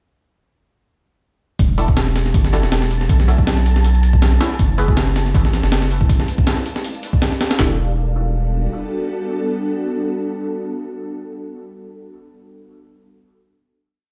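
Frenetic and atmospheric, this drum and bass and jungle piece in E dorian runs at 160 BPM with a light swing, where a gritty, heavily chopped sampler-style breakbeat with thumpy kick, high-tuned snare, hi-hat and handclaps drives up front from 1.6 to 7.7 seconds over long dark notes of saturated sub bass, while muted dub chord stabs drenched in phaser, lush chorus and dub echo move one chord shape in parallel through Em11, Bm11, F#m11 and D#maj9#11, a breathy wind-like noise texture holds a high note in the background, and an ethereal pad enters at 5.4 seconds with held chords and syncopated pushes as the stabs return for a final Em11, all heard as if through a big sound system in a bare stone room.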